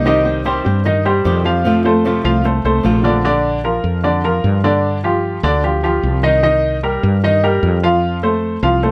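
A lightly reverberant, close-up mix opens this sunny, danceable Latin excerpt in Bb major at 151 BPM, where a bright baby grand piano with a worn, intimate tone and audible action noise plays short-sustained arpeggios over a growly, round fretless electric bass. A fingerpicked flamenco guitar adds acoustic accompaniment before stopping at 3.2 seconds, leaving piano and bass to carry the progression from Cm and F through Bb, G5 and Cm7 to the cut at 8.9 seconds.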